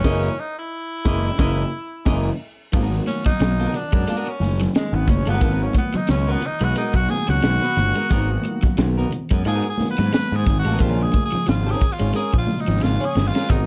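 Over a swung sixteenth-note funk groove at a cool, hypnotic pace, a tight drum kit with bright cymbals and a high-tuned snare sits up front beside a round, fuzz-overdriven picked bass, while a clean electric guitar, a slightly broken-up compressed guitar riff and barky, phased tine electric piano stabs fill in behind. After a band accent, a raspy, gritty tenor saxophone takes a distant, roomy solo from 2.7 seconds as very quiet, high-tuned congas join, with a drum fill near 12.8 seconds before this excerpt from a longer piece cuts off. The production is dark and warm, with light reverb.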